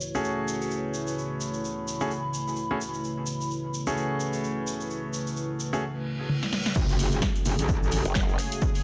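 A metallic, distorted wobble bass and an overdriven, punchy electronic kick hit together at the drop at 6.8 seconds, giving this bouncy, swaggering bass house excerpt in F# minor its aggressive weight at 129 BPM with a swung 16th feel, and a bright, saturated growl bass follows briefly at 8.1 seconds. Before that, a full-bodied sweeping resonant pad under a filter sweep holds an F#madd9 chord with sidechain pumping, alongside a grainy tube shaker, a nostalgic, lo-fi warbly tape-like pad and intimate concert grand piano stabs with audible action noise and tape echo. A background reverse cymbal and impact and a tape-warm house drum kit fill with punchy snare, warm hats, crash and toms lead into the drop, all in light reverb and digital ambience.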